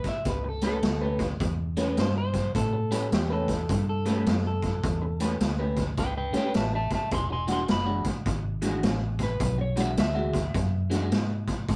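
A raw garage drum kit sits up front with a boomy kick, a medium-tuned snare and a saturated, rolled-off top, driving a gritty, rollicking electric blues shuffle at 105 BPM in A mixolydian. A picked riff from an electric guitar through a small old amp enters at 0.4 s, compressed and treated with phaser, over a dark, foam-muted fingered bass that is round and punchy. A second fingered guitar at the edge of break-up adds a higher line, and a clean electric guitar solo runs throughout as the harmony moves from A9 to E9 at 7.1 s, all in a rough rehearsal-room sound with moderate reverb.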